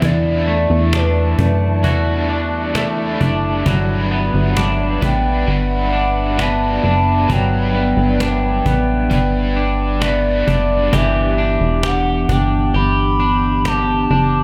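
Ethereal and dreamy, this dream pop excerpt drifts at 66 BPM in G major, resting on an Em11 chord before shifting to G6 at 10.9 seconds. A hollow, soft synth lead with a clarinet-like woodiness carries the melody through chorus and digital delay, its sustained tones shaded by vibrato. Beneath it, a warbling, nostalgic tape-like pad holds slow-blooming chords in a dark, lo-fi haze of chorus and its own reverb, while an electric guitar at the edge of break-up picks twangy arpeggios soaked in lush chorus and delay. A bright, overdriven garage guitar adds raw accompaniment with tremolo and subtle chorus until it drops out at 11.4 seconds. The punchy, funky analog bass sits up front with a fast, plucky attack that then decays, and a woody cajon with faint snares sounds distant, as if played in a large room.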